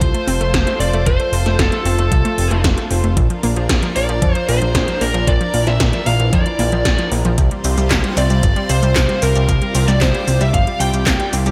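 A straight 4/4 pulse from an overdriven, knocking electronic kick and 80s-style drums with a gated snare, handclaps, metallic hi-hat and shaker drives this uplifting, romantic synthwave excerpt, where a fat sawtooth bass sits up front beneath a lush, detuned unison pad with sidechain pumping, a round analog pluck plays chorused arpeggios in the background, and a dark, distorted high-gain lead guitar carries the melody with delay while a very quiet, pure FM synth bell adds a second line, over chords moving from F to Bb at 3.2 seconds and to Csus4 at 7.4 seconds.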